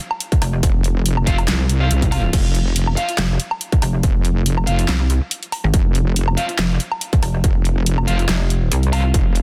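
A heavy wobble bass anchors this menacing, aggressive cut of heavy wobble dubstep. Its detuned sawtooth and sine tones sit up front, saturated and compressed with chorus and overdrive, from 0.6 seconds onward. Alongside it, a pulsing pluck wobble bass with a sine core appears briefly at 0.4 seconds and returns at 3.2 seconds, also overdriven and chorused, both basses moving between F1 and C2 over an F5 chord. At 141 BPM in 4/4 with a half-time feel and light swing on the sixteenths, a distorted, layered electronic kick pounds up front. Next to it, a tape-warm dubstep kit supplies a huge snare, bright hats, handclaps, crash cymbal and woodblock. A tight, picked electric guitar adds bright, distorted stabs from C4 to F5 with tape echo, lower in the mix, while digital ambience and a dense, heavily limited modern master give this fragment of a longer piece a crushing, crowded sound.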